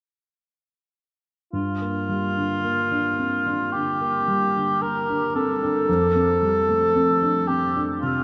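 Mysterious and hazy, this brief classical impressionist duo, cut from a longer piece, floats in a free, rubato 4/4 as an up-front, soft-attacked cor anglais sings a warm, distant melody over a dark, mellow grand piano whose worn, vintage tone and audible action noise stay intimate beneath it, both entering at 1.5 seconds and blooming into a vast, echoing space of long ambient reverb as the harmony drifts from Gm7 to F69.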